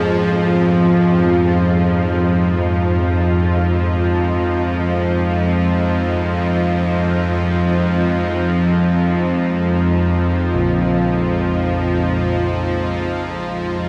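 A tense, string-like drone sits up front in this dark ambient fragment, holding low on F minor with a sawtooth edge, a noise layer, vibrato and its own reverb as it slowly evolves. Behind it, a chamber cello section sustains gut-string chords in a reedy period style, distant in the background, gradually fading in across the whole 13.9 seconds. Carillon bells ring out bronze arpeggios with a worn iron clapper, close and dry yet sent through tape echo, and they fade out over the same span. The piece moves in free time, bathed in a cavernous cathedral reverb with a dark, warm production that feels unsettling throughout. Cut from a longer work, it fades out from 12.2 seconds to its end.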